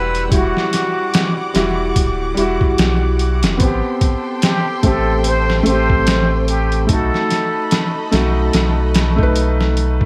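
A plunger-muted trumpet, breathy and close-miked with a jazz-style wah-wah tone and scooped notes, leads this melancholic, hypnotic trip hop fragment in E minor from its first moment, drifting through tape echo over a felt-muted upright piano. The piano sits up front, soft and intimate with audible action noise, colored by harmonic tremolo, 12-bit sampler grit and its own tape echo as it moves through Emadd9, Am7 and B7. Beneath it, a deep, round sine sub bass holds sustained low notes, while a distant bowed violin section adds focused, vibrato-rich chords carrying a layer of sampler grit. From 0.1 seconds, a compressed, pitched-down sampler-style kit settles into a slow 73 BPM groove with a 16th-note swing, its thumpy kick, medium-tuned snare and hi-hat sounding gritty and tape-warm. The trumpet drops away at 8.1 seconds, leaving the other parts to carry on amid small room ambience and a prominent bed of vinyl crackle.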